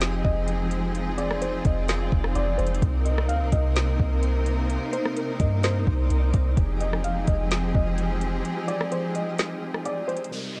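A half-time groove at 128 BPM in 4/4 drives this ethereal, spacious hip hop excerpt of atmospheric cloud-rap, with a smooth R&B drum kit of soft kick, woody snare, metallic hi-hats and rim clicks carrying a vintage 12-bit sampler grit up front. A deep, round 808-style bass sits alongside it, sine-like with a fast attack and decaying tail, until it drops out at 8.4 s for a break. Over an Fm7, Cm7 and Fm7 progression, a clear symphonic string section holds lush, bowed sustained chords with vibrato, shaped by sidechain pumping and a low-pass filter. A felt-muted upright piano plays a mellow, intimate melody between Bb4 and F5, softened by its own low-pass filter and trailed by delay. In the background, a twinkling granular texture adds an octave-up FM shimmer with slow attack, long release and built-in reverb, and an electronic downlifter closes the clip at 10.3 s within a dark, warm digital ambience.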